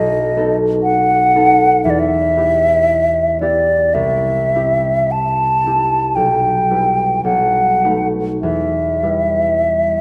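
Elegiac and yearning, this short excerpt from a longer classical romantic duo unfolds slowly at 48-62 BPM in 4/4, with a free, rubato feel in E minor and tuning set to A4 = 441 Hz. A silver concert flute carries the melody between D5 and A5, its tone pure and hollow, shaded with vibrato and tongued notes, and it sits close and up front, somewhat louder than its partner. A concert harp supplies the accompaniment across a broad span from B1 to B4, its fingerpicked strings sounding mellow and ringing, also placed up front. Both instruments play throughout the 10 seconds, moving through a brooding progression that opens on B7 and settles on Em at 8.4 seconds. A wet recital hall reverb with a 1.4-second decay gives the duo an intimate yet spacious glow.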